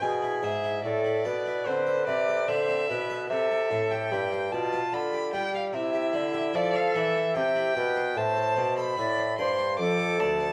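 A rich, expressive violin carries the melody up front with vibrato and portamento over an airy, soft-attack concert flute second line, a full, plucked Flemish-style harpsichord and a warm bassoon bass with light vibrato in this serene, radiant baroque-style sonata movement at 74 BPM in 3/4, cut from a longer piece and heard through a wet recital hall reverb and worn cassette tape with warbly pitch drift as the harmony moves from E/B through Am, C and G7/D to Dm7/F.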